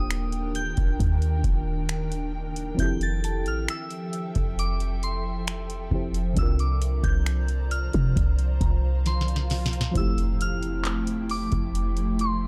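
A clean, sine-like 808-style bass sits up front in this tender, romantic contemporary R&B piece at a slow 67 BPM in F major, alongside an analog drum machine with a deep kick, crisp snare, metallic hi-hats, handclaps and finger snaps. A round, mellow FM electric piano with chorus and phaser carries the Ebmaj7, Fmaj9 and C9sus4 chords beneath a soft, warbling vintage bell melody, while an ethereal, airy detuned pad with ensemble chorus and its own reverb holds sustained chords. From 3.2 s a woody mallet-like pluck with tape echo adds faint texture, and a very quiet electronic swell and drum fill lead to an impact at 10.0 s, all within a dark, dry production.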